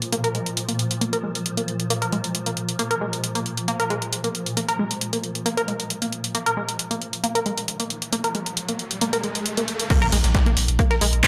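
Bright 1980s-style digital production bathes this dark, industrial peak-time techno excerpt at 135 BPM in wet plate reverb. An up-front, tape-warm analog drum machine of crash, handclaps and hi-hat drives alongside a tight, detuned sawtooth sequenced riff coloured by chorus, phaser, tube saturation and digital delay, over a swarming, tense granular drone that pumps with the sidechain. A riser builds from 8.3 seconds into a drop at 9.9 seconds, where an electronic impact lands, a punchy kick arrives and a gritty, pitched-up sampler-style kit of snare and hats with gated reverb sits in the background, before a round sine sub bass on Bb1 joins at 10.1 seconds.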